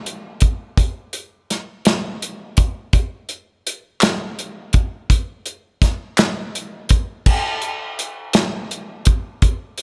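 A small, lightly reverberant room frames this brief gospel passage, cut from a longer piece, with a reverent yet uplifting mood. It moves at a slow 56 beats per minute in a straight 6/8, felt in dotted quarters. An acoustic country drum kit sits up front from 0.1 seconds, its tight kick, medium-tuned snare, hi-hat and dark crash cymbal carrying the whole passage. A group of human handclaps joins in the background at 4.0 seconds, adding a crisp edge before dropping out at 6.5 seconds. The drums then carry on alone into a new section at 7.3 seconds.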